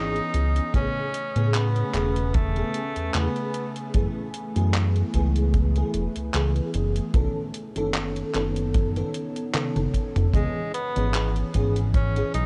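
Nostalgic and woozy, this vaporwave excerpt drifts at 75 BPM in C# minor with a lightly swung 16th feel. A lush, dreamy FM electric piano with a soft pad layer, chorused and tape-echoed, carries the C#m7, Amaj9, F#m11 and B9 changes over a glossy, up-front chorused synth bass and a warbling, lo-fi tape-like pad in the background, with phaser and 12-bit sampler grit. A detuned 8-bit drum machine of handclaps, hi-hat and toms sits beside a boomy, airy acoustic kick, with a drum fill from 9.5 to 10.3 seconds, while a clear tenor saxophone with light vibrato and tape echo sings a brief solo line at the start and returns at 10.3 seconds, all on a cassette-toned recording in a small room.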